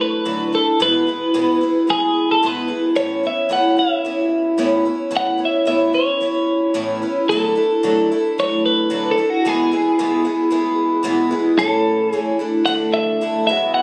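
Rock with a warm, jangly mood at a steady straight pulse, where a bright, twangy twelve-string electric guitar carries the melody with slapback echo over a woody, boxy picked twelve-string acoustic guitar whose octave-doubled shimmer fills the accompaniment, both up front in light small-room ambience, with the chords moving through Dadd9, E and Aadd9 before shifting to A at 11.6 seconds and Dsus2 at 12.4 seconds in this short cut from a longer piece.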